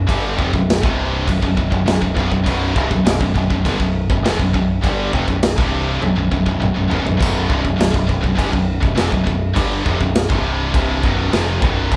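A growling, overdriven picked bass and three high-gain guitars (one scooped and set in the background, one very quiet and double-tracked) open this dark, epic heavy metal excerpt at 102 BPM in B phrygian, all playing a riff over Bm. A moment later a punchy, up-front acoustic drum kit with bright cymbals joins them, with a drum fill at 6.0 seconds and the band sounding live together in a large studio room.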